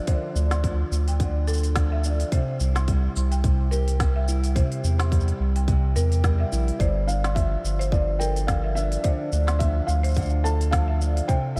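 A round, deep analog bass sits up front beneath fingerpicked steel-string acoustic guitar arpeggios with a boxy parlour tone and delay, a buzzing marimba struck with hard mallets adding a dry, lo-fi-gritty second line, and a tight electronic kick with a woody-snared, smooth-hatted kit and shaker swinging gently at 107 BPM in this delicate, warm folktronica excerpt in C major, before a soft, felt-muted upright piano with audible action noise carries the melody from 6.8 seconds.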